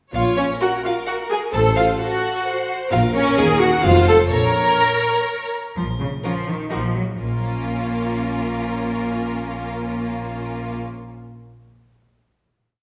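Violins, violas, cellos, double basses and a tuba begin together on a Bb minor chord, opening a playful, whimsical film cue in 3/4 at 129 BPM with a quirky, magical air. The lush, up-front violas carry much of the tune over after-beat and sustained chords. The smooth symphonic first violins add a counter-melody while the rich chamber second violins double the tune at the octave with expressive vibrato. Down low, the distant cellos mix pizzicato bass with melodic moments, the clear, intense double basses sound on the beats, and a dark, soft-edged solo tuba doubles the bass line until 4.7 s. A triangle appears briefly at 5.8 s for the short coda before the ensemble settles onto a held Bb minor final chord from 7.2 s, all bathed in the wet reverb of a recital hall.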